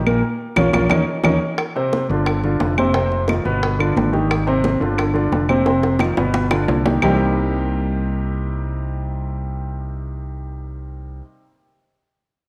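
Sophisticated and driving, this short cut from a longer Afro-Cuban jazz piece moves in a straight 4/4 feel. A concert grand piano with deep bass and a natural tone sits up front, carrying the accompaniment through chords such as G7b9b13 and Abmaj7 before settling on Cm7 at 7.0 seconds. Beneath it, a fingered electric bass, direct and amped, holds the low end throughout. The percussion section of woody, dry claves, bright, thin-skinned congas set back in a live room, and tight, high-tuned bongos played with hard hands drives the groove until 7.1 seconds, when the piano and bass carry on alone. Drum fills mark the opening and the passage just before the percussion stops, with a band accent punctuating the first bars. A wet echo-chamber reverb gives the recording a studio sheen.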